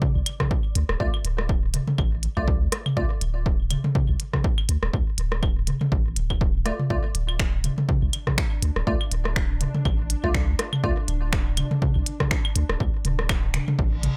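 A swung 4/4 pulse drives this quirky, cool minimal techno excerpt, built on a punchy, tape-colored electronic kick, an overdriven analog drum machine of claves, rim clicks and toms with digital delay, and a clicky kit of finger snaps and hi-hats, all up front with little reverb. A deep sine sub bass with a pitch-drop attack pumps against the sidechain beneath crisp, detuned wavetable chord stabs that sweep through a filter in two bursts, the second starting at 6.7 seconds, treated with cassette tape and delay. From 7.7 seconds a faint, swarming drone warbles in with granular, vintage grain, and a reverse cymbal closes the cut at 13.9 seconds.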